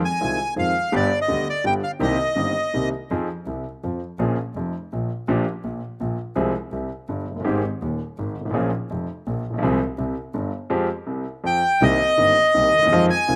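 A dry, open-air recording carries this tense, sultry tango fragment in a rubato 3/4 sway, where a reedy, bright bandoneon with slapback echo sings the melody up front from the start until 2.9 s and returns at 11.5 s, over a clear, intimate concert grand piano accompaniment with audible action noise, deep bass and long sustain, and a rich, close bowed double bass played with vibrato and expressive portamento.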